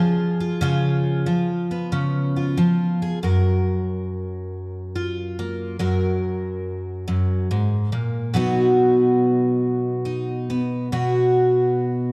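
Folk music for solo fingerstyle acoustic guitar, this short excerpt drifts in a nostalgic, peaceful mood at a slow 46 beats per minute in 6/8 with a free, rubato feel in F# major. A picked twelve-string acoustic guitar carries everything alone from start to finish, its octave-doubled strings giving a shimmering, jumbo-bodied tone that sits up front. The harmony opens on C#7, settles onto F#maj7 at 3.2 seconds, and moves to B at 8.3 seconds, spanning from F#2 up to A#4. A moderate concert hall reverb adds a gentle sense of space, while the overall production stays dark and warm around the bright guitar. Cut from a longer piece, it lasts just over 12 seconds.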